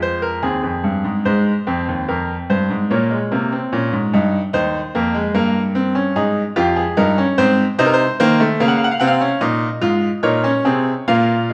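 Classical in a baroque style, this is a four-part fugue for solo grand piano in Bb minor, moving at a steady 73 BPM in a straight 4/4 with a mood that is both driving and contemplative. A bright baby grand carries every voice alone across the full span of the clip, reaching from Eb2 up to Gb5, its tone brilliant and open and placed up front. The harmony travels from Fm through Bbm7, Eb, Abmaj7 and F7/C before settling on Bbm at 9.4 seconds. A brief opening passage gives way at 1.3 seconds to a longer second section that runs to the end. The instrument sits in a reverberant recital hall whose wet tail lingers around each phrase, and the clip is cut from a longer piece, tuned slightly low at A4 = 437 Hz.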